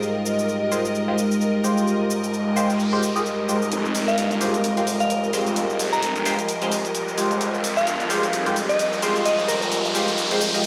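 Bass house at 130 BPM in F minor with a swung 16th feel, swaggering and gritty: a deep, moody pad, a nasal band-passed chord stab with phaser and delay, and a smooth bowed string section open on an Fmadd9 chord over an overdriven electronic shaker and hi-hat, while a filter sweep moves across the stab and a noise sweep enters at 2.2 s. At 3.7 s a thick, swirling detuned saw bass arrives with phaser and tube saturation, and a glassy FM synth bell carries the melody from 4.1 s, as a riser and filter sweep drive a build-up to the end of this cut. The sound sits in moderate digital reverb, heard through a big sound system in a bare stone room.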